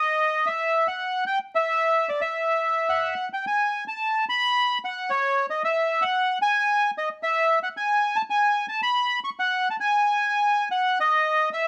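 A reedy, vintage-toned bandoneon plays alone and up front across this passionate, sultry tango fragment in E minor, its band-limited voice ranging from C#5 to C#6. The 4/4 pulse sits around 112 BPM but moves with a rubato feel, and the phrase shifts to a new section at 3.5 seconds before the cut at 11.7 seconds. Light reverb and a layer of vinyl crackle give the recording an old-record atmosphere, with tuning set slightly low at A4 = 438 Hz.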